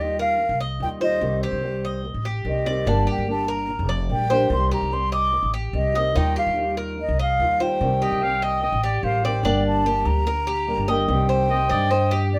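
An airy, vibrato-laden baroque flute carries the melody up front over a boxy, fingerpicked ladder-braced acoustic guitar, mellow metallic tres arpeggios and a woody, thumpy pizzicato upright bass in this nostalgic, warm Latin excerpt at 146 BPM, moving through Ebadd9, Cm and Gm in a small room, before a clear trumpet with light vibrato adds a second line from 8.0 to 12.2 seconds.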